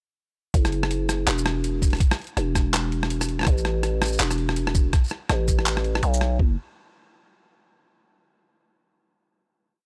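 A growling, buzzy 808-style bass sits up front in this short half-time drum and bass piece, its saturated sine tone cut into chopped phrases with a fast attack and a decaying tail. The mood is cinematic and spacious, with a swung sixteenth-note feel running under the whole drop, which lasts from 0.5 seconds to 6.4 seconds. An up-front electronic kick drum, sampler-style, compressed and pitched down, gives a thumpy half-time pulse touched by studio reverb. Alongside it, a boom bap sampler-style kit plays a sparse half-time beat of shaker, closed hi-hat, rim click and handclaps, also pitched down and compressed with studio reverb. The overall sound is a dry, gritty hardware recording, and a final note rings out until 7.9 seconds.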